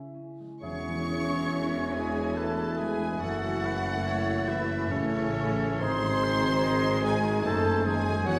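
Opening with lush, vibrato-rich violins singing the melody over dark violins, a mellow clarinet, violas and ringing thumb-plucked harp arpeggios, this solemn, melancholic classical excerpt in C# minor and a rubato 3/4 is joined at 0.6 s by airy flutes, a warm oboe, a distant bassoon, a mellow French horn section and a bass of punchy tuba, cellos and double basses, moving through C#m, F#m7 and G# in a reverberant hall.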